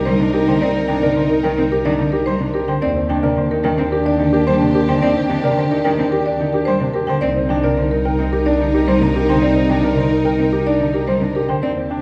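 Heard from further back in a reverberant recital hall, this urgent, hypnotic minimalist classical piece sets a buzzing, woody marimba melody over clear grand piano arpeggios with audible action noise, while an airy, hollow alto flute adds a second line in the background, a rich bowed string section holds sustained chords, a single bowed cello with vibrato accompanies from 0.1 to 11.7 seconds, and a distant, smooth double bass section carries the bass as the harmony moves from Cm7 to Ebmaj7 and back to Cm7.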